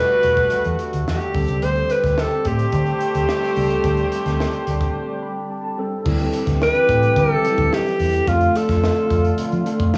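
This is polished 1980s jazz-funk pop, a breezy, urban cut from a longer piece, moving at 108 BPM in a straight 4/4. A breathy alto saxophone carries the melody up front, with subtone, light vibrato, punchy attacks and scooped notes, while a distant, roomy horn section plays a tight second line until 5.5 seconds. A mellow tine electric piano, clean and heard through its built-in speakers with an ensemble chorus, supplies the accompaniment, and a dark, close-miked brass ensemble holds sustained chords in a classical style. A round, foam-muted fingered bass with an amped tone and a crisp fusion kit, with a high-tuned snare, a punchy kick and a pumping small-room sound, come in at 0.2 seconds. A break at 4.9 seconds gives the electric piano a fill before the second section, as the harmony moves from Em11 and D7sus4 to D9sus4 and F6, all set in a moderate small room with the character of a home cassette recording.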